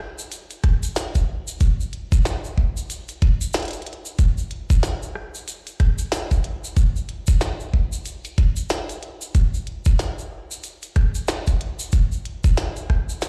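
Heard as if through a big sound system in a bare room and bathed in large studio reverb, this playful, swaggering glitch hop excerpt moves at 93 BPM in 4/4 with a 59% swing on the sixteenths. A grainy, bright tube shaker enters at 0.2 s, joined at 0.3 s by a glitchy electronic kit of clicky hi-hats, rim clicks and a tiny snare. At 0.6 s a layered, knocking electronic kick arrives, tape-toned and up front, carrying a small-room ambience.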